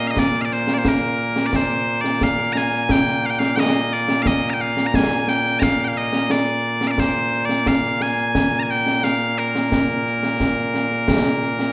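Recorded in a church or concert hall, this short cut from a longer piece has a moderate hall reverb with a 1.9-second decay. Piercing, continuous bagpipes sit up front as the solo melody of this Scottish traditional pipe music, in Bb mixolydian at 88 BPM in a straight 4/4 and tuned to A4 = 441 Hz. An acoustic concert snare drum and concert bass drum, with bright cymbals and a small-room sound, play through all 11.7 seconds, giving a ceremonial, proud mood.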